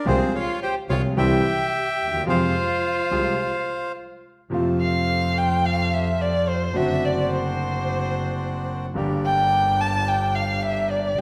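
A rubato 4/4 pulse gives this melancholic, dramatic tango fragment its pull, as a reedy, bright, up-front bandoneon sings the melody over a second line from the bowed violin until a break at 3.4 seconds. From 4.5 seconds the violin takes a solo, expressive and up front, with vibrato, portamento and a smooth top. Beneath it a clear, vintage-toned concert grand with deep bass, dark and airy bandoneon stabs, and an earthy, distant bowed double bass with light vibrato sit in the wet reverb of a recital hall.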